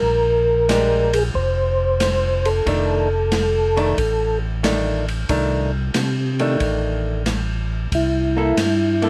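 Swinging and bluesy, this soul jazz organ trio passage is cut from a longer piece and moves with a swung eighth-note feel in 4/4. The melody sits on a soft, flute-like tonewheel organ with second-harmonic percussion, its clean tone turning slowly through a rotary speaker with chorus vibrato. Beneath it, a second tonewheel organ carries the bass line, fat and lightly overdriven, with audible key click and the same slow rotary swirl. At 0.7 s a clean, picked hollow-body archtop guitar joins with dark comping, alongside an acoustic drum kit heard in a small room, its boomy kick, medium-tuned snare, hi-hat and smooth, shadowy ride cymbal sitting behind the organs with a rolled-off top. The harmony moves from Bb13 to F6 and then C6, all wrapped in a light reverb.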